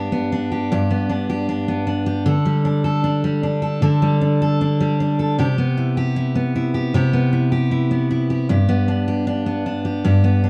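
Carefree and easy-going, this short pop excerpt moves at 77 BPM in a straight 4/4 feel in G major. A picked steel-string acoustic guitar plays alone throughout the full 10.5 seconds, ranging from G2 to A4. Its jumbo body gives a full-bodied, warm tone, and finger squeak can be heard with the guitar sitting up front. The harmony moves from G to Dsus4 at 2.3 seconds, then to Cmaj7 at 5.4 seconds, before settling back on G. The sound is a dry, close 1970s-style studio recording with a moderate booth ambience, and the passage is cut from a longer piece.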